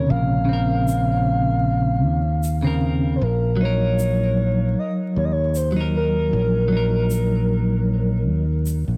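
This dark, brooding trip hop excerpt moves at a slow 77 BPM in 4/4, with a light swing on the sixteenths. A fingered electric bass sits up front with a warm, direct and amped tone, holding down the low end over a Bbmadd9 chord that shifts to Ebm/Bb at 3.2 seconds. A clean electric guitar, bright, twangy and compressed, plays the accompaniment, colored by harmonic tremolo and tape echo. Above it, a pure, breathy sine lead carries the melody with a gliding, warbling vintage quality, its vibrato and portamento thickened by chorus and dub echo. An egg shaker enters at 0.9 seconds, adding a soft acoustic pulse from a small room. Studio reverb and a bed of vinyl crackle give the whole short passage a dusty, late-night atmosphere.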